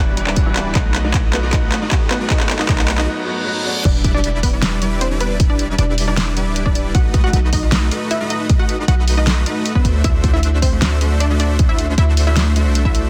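A huge, detuned supersaw riff with sidechain pumping drives this emotional, lush future bass passage in E minor at 155 BPM in a half-time feel, joined by a lush unison pluck melody with dub echo and a filter sweep, a bright baby grand piano in the background and a barely audible ethereal pad through the build-up, a very quiet riser and reverse cymbal leading into the drop at 3.9 s, and a deep, boomy 808-style bass, punchy up-front electronic kick and pop kit with fat snare, handclaps, hi-hat and crash carrying the Em7, B7 and D9 changes through a dense, heavily limited master with light reverb.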